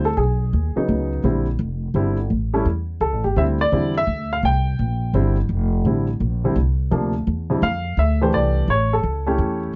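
Closely miked and detailed, with a light reverb, this short excerpt from a longer jazz trio piece has a playful, sophisticated swing waltz feel. An intimate baby grand piano carries the melody, its natural tone marked by short sustain and audible action noise, while an up-front pizzicato upright bass adds a dark, woody, thumpy low end beneath it. The harmony moves through colorful chords such as Bb69, Dsus2 and Fmaj7 before a new section begins at 7.6 seconds and lands on A7.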